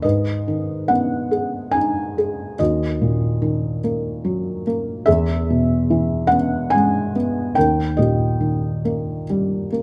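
Classical solo piano in a reflective, dark mood, this brief rubato fragment in three has a felt-muted upright piano, its thick felt giving a soft, mellow tone with short sustain and audible action noise, played up front through close, detailed microphones with light reverb as the harmony moves from G#m through D#m and E to D#.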